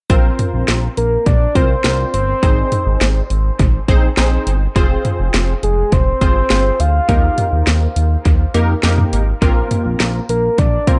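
A punchy, tape-warm house drum kit with a cracking snare and dub echo sits up front in this upbeat yet wistful synth-pop excerpt, over a dark, smooth sawtooth bass, a funky, detuned polysynth comp with chorus and a filter sweep cycling through Bbsus2, Ab, Fm and Ebadd9, and a mellow, round octave-layered lead with vibrato that enters at 1.0 seconds, all in an echo-heavy mix with light reverb and a rolled-off top end.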